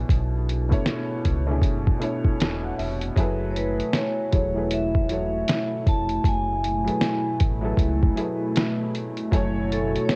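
A soft, muted felt-muted upright piano with audible action noise and a deep sine sub bass with octave open this nostalgic, reflective lo-fi hip hop fragment, joined by an up-front, compressed sampler-style drum kit with a thumpy kick and fat snare in a swung 4/4 groove, before a hollow, flute-like detuned pad with chorus arrives at 3.2 seconds and a metallic, ringing vibraphone played with medium hard mallets and tape echo carries the melody from 3.5 seconds, the whole cut sitting in light digital reverb with a cassette home-recording character.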